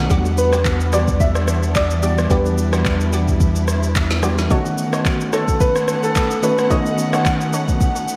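A gently swung, unhurried groove sits at the heart of this deep, hypnotic amapiano fragment, carried by a smooth, produced R&B drum kit of soft kick, woody snare, rim click, handclaps and shaker that sits up front with a tape-warm, roomy character. A dark, round, punchy fingered electric bass anchors the Em9 harmony on a low E until 4.5 seconds, where the chord moves to B9 and the bass drops away. A mellow, clean tine electric piano fills in the accompaniment, while a distant studio string section holds sustained, bowed chords with soft attack, vibrato and expressive portamento. From 0.4 seconds a clear, intimate grand piano carries the melody with audible action noise and a boxy edge, colored by analog chorus and tape echo. Short, detuned analog pluck stabs with a sawtooth bite, noise layer and moving filter sit in the background through chorus and tape echo, and the whole mix is soaked in a long church reverb that gives it a dreamy haze.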